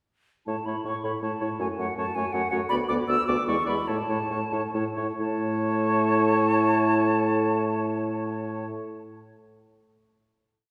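A quick, cheerful classical-period movement for wind quintet in A major and 3/4 opens at 0.5 s with all five players sounding together. A hollow, tongued flute carries the melody up front with vibrato, while a clear oboe with vibrato sings a second line beneath it. A mellow clarinet and a soft-attacked French horn with a smooth top fill in the accompaniment with repeated notes and sustained chords, and a dark bassoon, touched with light vibrato, anchors the bass with repeated notes and held tones. The tempo moves freely between 130 and 165 BPM with a rubato feel, slowing from 2.2 s as the harmony passes from A through F#m, Bm/D and E7 back to A. A final chord rings from 5.2 s, and the players are heard from further back in a concert hall whose lush reverb lingers around them.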